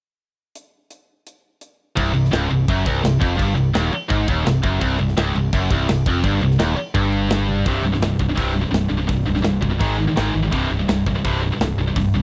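A tight acoustic metal drum kit opens this dark, heavy metal excerpt at 0.6 s, its crash, hi-hat, kick, snare and toms sounding in a big room with bright cymbals, a medium-tuned snare and a firm kick. At 2.0 s a double-tracked, high-gain guitar crashes in up front with a distorted riff over C minor, joined by a growly, punchy picked electric bass playing low beneath it. A drum fill at 7.5 s leads into a new passage where the riff shifts to power chords, moving from C5 to Ab5 and back. The straight 4/4 feel stays heavy and dark throughout. The overall sound is dry and close, like a 1970s studio session in a small room, and the clip is cut from a longer piece.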